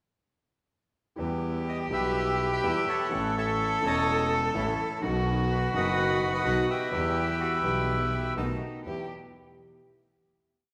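Uneven groups of three and two eighths drive this complete, dramatic and melancholic tango at 126 BPM in E harmonic minor with a rubato feel, as a bright, airy bandoneon enters at 1.7 s with a motif-based melody over a nasal, bowed cello counter-melody, a polished grand piano accompaniment, very quiet, dark and dry bandoneon stabs, and a biting, distant bowed double bass, moving through Em, A, B and B7 to a final Em chord at 8.9 s in a wet recital hall reverb.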